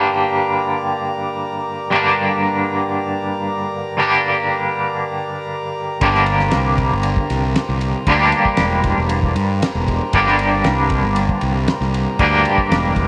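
Hypnotic and dark, this short psychedelic rock excerpt in G minor moves at 117 BPM in a straight 4/4, resting on a single G minor chord. A twangy, bright, double-tracked electric guitar riff with tremolo sits up front over reedy, breathing sustained harmonium chords, and at 6.0 seconds a round, fuzz-overdriven fingered bass and a cloth-damped, thuddy drum kit with a fat snare, tight kick and dark ride cymbal join in. Light studio reverb gives the mix a modest sense of space.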